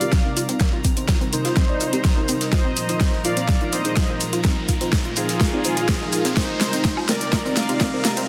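A straight 4/4 pulse at 125 BPM drives this dreamy, emotional progressive house excerpt in C minor, with a deep, layered electronic kick up front from 0.1 s and a big-room dance kit adding a huge snare, metallic hats and woodblock, while a very quiet acoustic studio kit with hi-hat, shaker and snare and grainy, close maracas sit low beneath. The whole passage is a build-up, carried by a drum fill and filter sweeps, including one on the bright, detuned unison pluck whose arpeggios between C4 and F4 pump with sidechain compression and trail digital delay in the background. A soft, smooth supersaw carries the melody from Eb4 to F5 with its own delay, over a detuned analog pad holding sustained chords with chorus and sidechain pumping. A dark, mellow chord stab with a sub octave adds short decaying hits colored by chorus, phaser and delay, and a glassy texture of drifting overtones hovers around Bb5 with a long release and its own reverb. 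The harmony moves from Cm7 to Bbsus4 at 2.5 s and back to Cm7 at 6.4 s, while a very quiet riser enters at 1.0 s. A lush hall reverb surrounds the mix, and the master is dense and heavily limited.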